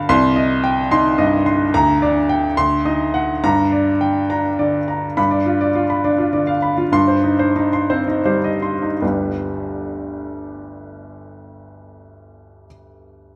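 Passionate and agitated, this short passage from a virtuoso classical piano study unfolds in a rubato 6/8 at 52-73 BPM, with a solo baby grand ranging from deep G1 up to C6. The piano sounds clear, intimate and natural, placed up front with audible action noise and set in a wet recital hall reverb. The harmony moves from C minor through G minor and dominant chords, the pace slows from 4.3 to 9.0 seconds, and the passage settles on G major.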